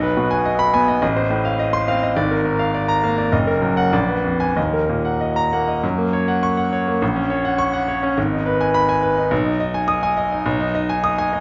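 A classical virtuoso piano study in 2/4, this short passage taken from a longer piece is agitated and stormy, moving with a rubato feel between roughly 92 and 107 BPM. A bright grand piano plays solo throughout the 11.4 seconds, ranging from Gb1 up to D#6, its brilliant, polished tone sitting up front with long sustain and audible action noise that lends an intimate presence. The opening section stays in Eb minor, passing through chords such as Abm/Cb, F7/A and Bb7b9 before settling on Ebm. At 5.8 s the music shifts into F# major, stepping through F#, F#/A# and G#m to close on G#m/B. The instrument is set in a wet recital hall reverb with a 1.2-second decay, recorded in a church or concert hall with a soft top end and tuned to A4 = 438 Hz.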